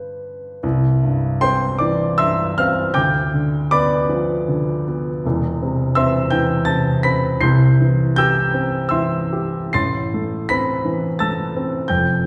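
Bathed in a lush recital-hall reverb and heard from deeper in the room, a warm grand piano sits up front in this 12.3-second romantic classical character piece excerpt, playing solo across a broad span from E1 to C7 in a rubato 3/4 at 62-88 BPM, moving through C major harmonies from G to C, G7/D, C/E and on to A minor with a passionate, hopeful feel.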